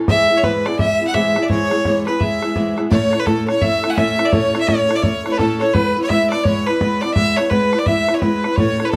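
This Celtic hornpipe moves at 170 BPM in 4/4 with a 62% swing on the eighth notes, giving the cheerful, rollicking tune a bouncing lilt in E mixolydian. A rich, smooth fiddle with light vibrato carries the melody up front, while a second, clear and focused fiddle plays a supporting line in the background, touched with tape echo. A warm, fingerpicked steel-string acoustic guitar opens the piece alone at 0.0 seconds and sits up front as accompaniment, with the fiddles and a damped, tight bodhran joining at 0.1 seconds. The harmony moves from E over G# to A at 2.9 seconds, where the section repeats, and back to E over G# at 5.7 seconds. The ensemble sits in a reverberant studio space heard from further back in the room, and this short cut from a longer piece runs to 9.0 seconds.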